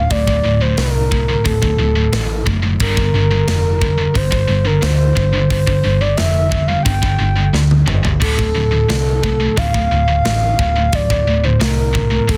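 A breathy, flute-like synth lead with a soft attack carries the melody over this dark, relentless heavy metal excerpt at 89 BPM in D minor, its sustained tone shaded by chorus, tremolo, vibrato and digital delay. Beneath it, a scooped, double-tracked high-gain guitar churns out a distorted riff, joined by a round, hollow-body picked bass and a tight metal drum kit with bright cymbals that enters at 0.1 seconds and plays a fill from 7.5 to 8.2 seconds. The chords move from D5 to Gm to Dm in a dense, heavily limited modern master with little reverb.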